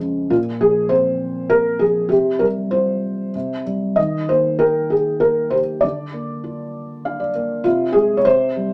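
A moderate studio reverb surrounds this short fragment of a wistful, gentle children's lullaby in a rubato 3/4, where a felt-muted upright piano plays the accompaniment from the start and the melody from 0.3 seconds, its dark, thick-felt tone and audible action noise sitting up front and intimate, with a brief piano fill from 6.7 to 7.7 seconds.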